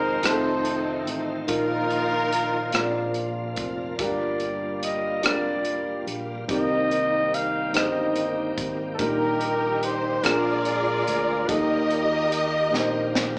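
Jubilant and hopeful, this slow gospel passage in 6/8 at 48 BPM in Eb major, cut from a longer piece, sets a mellow, jazz-style solo trumpet with scooped notes up front alongside a dark, lush bowed string section that carries the melody until 3.1 seconds and returns at 9.0 seconds, over a woody upright piano with audible action noise, a shouting tonewheel organ with slow rotary speaker and chorus vibrato in the background, distant sustained French horn chords, growly fingered electric bass and a crisp fusion drum kit with a high-tuned snare and punchy kick that closes on a fill at 12.7 seconds, all heard as a live band in one room through a small speaker with a large studio reverb.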